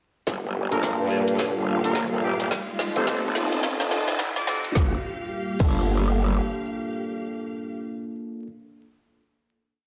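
Glitch hop at 107 BPM in G minor with a 16th-note swing, this playful, funky piece moves from Gm7 to F7 and back to Gm7, building from 0.3 seconds with a drum fill from a tight electronic kick and a kit of woody snare, metallic hats and crash, under a growling, wobbling, saturated bass, barky overdriven electric piano stabs with a filter sweep, a dark detuned analog pad, a rich bowed string section, a distant, clear trumpet with tape echo, and a background riser, before landing on a final chord at 4.8 seconds amid stone room reverb and vinyl crackle.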